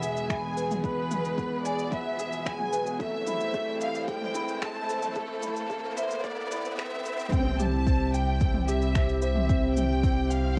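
A felt-muted upright piano opens this hopeful, tender piano-and-strings electronica excerpt, its soft, mellow riff carrying audible action noise, joined at once by a bright, distant violin section singing the melody with vibrato and a thick, detuned unison pad with chorus and sidechain pumping. A deep, overdriven electronic kick enters at 0.3 seconds, while an organic electronic kit adds finger snaps, shaker and toms in a moderate booth ambience. The harmony moves from E to A minor as a filter sweep builds from the start and a background riser joins it from 1.5 seconds. At the drop at 7.3 seconds the chord settles on C and a round sine sub bass arrives, pumping beneath the pad. Cassette tape colouring and shimmer reverb give the piano, strings and pad a lo-fi, home-recorded haze.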